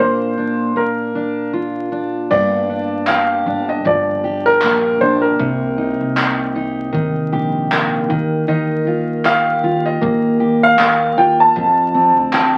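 Sunny and easy-going, this acoustic pop passage, cut from a longer piece, moves at a relaxed 78 BPM with a light swing on the sixteenths. A brilliant, long-sustaining upright piano carries the melody up front over a full-bodied fingerpicked jumbo steel-string guitar, and at 2.3 seconds a woody, growly pizzicato upright bass settles into the background alongside an airy brush kit with dark cymbals, a boomy kick, handclaps and a crash. The harmony drifts from Bb through Gm7, Cm7 and Ebadd9 to Fadd9, all in a wet small room that sounds like a very old 78 rpm record, complete with vinyl crackle.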